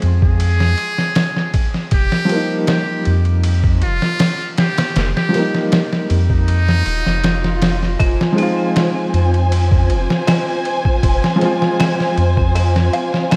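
Trip hop at 79 BPM in F minor, this melancholic, smoky excerpt drifts through a dreamy mix soaked in hall reverb and vinyl crackle. A compressed, pitched-down sampler-style drum kit sits up front with a thumpy kick, medium-tuned snare, hi-hat and ride cymbal, joined by a deep, round dub sub bass. A felt-muted upright piano plays mellow, intimate accompaniment through tremolo and tape echo, while a buzzy trumpet with a metal mute carries a jazz-style solo melody from 0.2 to 7.9 seconds, also trailed by tape echo. A faint electronic swell bridges into the second half, where at 8.0 seconds a distant, bowed string section enters with expressive vibrato, portamento and vintage 12-bit sampler grit, alongside a delicate, tinkling music box playing arpeggios through delay in the background. From 9.1 seconds a flickering, granular texture with lush chorus adds a detuned shimmer beneath it all, while the harmony, having moved from Fm to Ebadd9/F at 1.9 seconds, rests back on Fm from 8.0 seconds.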